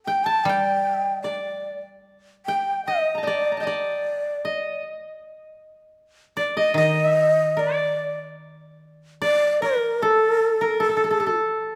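Austere and calm, this short passage of Japanese chamber music moves at about 76 BPM in 2/4, with uneven, rubato beats and a melody in D miyako bushi. An end-blown bamboo shakuhachi carries the melody up front, its breathy, mellow tone shaped with vibrato and tongued notes. A koto, plucked with fingerpicks, plays a second line in a similar register, also up front, its sound dry and woody. A second koto adds a low accompaniment in two brief passages, the later one starting at 6.7 s. A new section begins at 8.4 s, and the trio sits in a moderate recital-hall reverb that lends the sparse texture a quiet sense of space.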